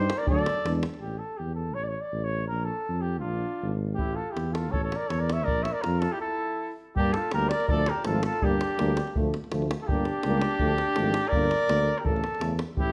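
Heard in a moderate recital-hall reverb, this fiery, virtuosic Balkan brass band excerpt in a swung 2/4 at 163 BPM, set in A phrygian dominant, speeds up throughout as a mellow, lightly vibrato cornet carries the melody up front over a dark, close-miked tuba bass and a tight, dry davul, while a distant flugelhorn with vibrato adds a second line and two warm euphoniums, one smooth-topped in the background and one very quiet, return to the accompaniment at 7.0 s after a short break starting at 6.2 s.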